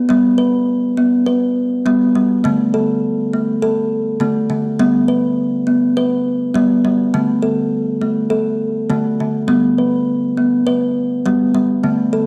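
Worn, warbling cassette tape with drifting pitch and a moderate echo-chamber reverb in a small room frames this gentle, meditative world piece at 102 BPM in 4/4 with a light sixteenth-note swing, where a solo kalimba, woody and bright with a ringing thumbnail pluck, sits close-miked and up front throughout the 12.3-second excerpt, moving between G and D5 chords.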